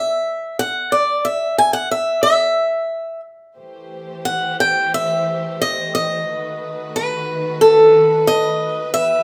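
Heartbroken and reflective, this short folk excerpt at 90 BPM in 4/4 opens with a bright, boxy swing-style acoustic guitar carrying the melody up front, its picked notes catching an occasional finger squeak. At 3.6 seconds a studio string section enters beneath it, holding lush, woody bowed chords with vibrato over Am7 and then B7 at 6.3 seconds. A moderate studio reverb surrounds both parts until the cut at 9.2 seconds.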